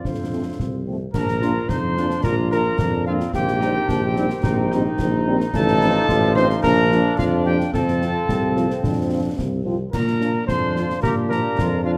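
This rousing, festive military-style march for wind band, cut from a longer piece, opens with a mellow, soft-attacked solo cornet carrying the melody over an up-front tuba bass. Around them sit a distant, roomy woodwind section with vibrato, a brief euphonium line, and concert snare drum, concert bass drum and clash cymbals with dusky cymbals. The music moves in a straight 2/4 at 109 BPM in Bb major, tuned to A4 = 436 Hz, with chords shifting among F, Bb, Cm7/Bb and F7/A. A tight French horn section joins in the background as accompaniment, and at 1.1 seconds a bright, pure wooden piccolo enters with tongued, vibrato-laden notes high above, while a vintage-toned trombone section holds sustained chords behind. The shadowy euphonium, a classical-style solo voice set back in the mix, returns briefly around 8.3 seconds. The cornet sits close and mellow, the tuba sounds warm and spacious, and light reverb with close, detailed microphones gives the band a crisp presence.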